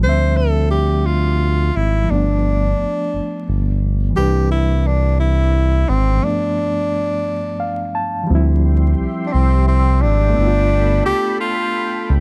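A breathy, close-miked tenor saxophone leads this slow, sultry six-eight R&B excerpt at 58 BPM in D dorian, carrying a jazz-style solo melody with soft attacks and scooped notes. Beneath it, a reedy, clean electric piano comps with a fast tremolo, while a smooth, mellow synth bass sits up front with a sustained low end. The chords move unhurriedly through Dm11, G9 and Cmaj9, giving a late-night feel. During a break in the groove, the electric piano plays a short fill at 7.3 seconds. At 8.3 seconds a lush, thick, detuned unison pad enters with slow-attack chords treated with chorus, filling out the sound behind the saxophone. The production is dark and dry, with vinyl crackle under the whole piece.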